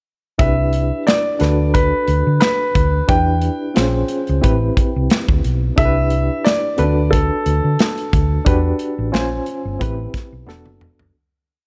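A gently swung sixteenth-note soul groove drives this smooth, cinematic piece in lush 1970s style, with a punchy kick and medium-tuned snare up front beside a round, dark hollow-body bass line, a barky, lightly overdriven electric piano with fast tremolo playing rootless chords with grace notes, and a clear, intimate grand piano with audible action noise singing a motif-based melody until 10.4 seconds, as the track fades from 8.5 seconds and a drum fill closes it at 11.1 seconds.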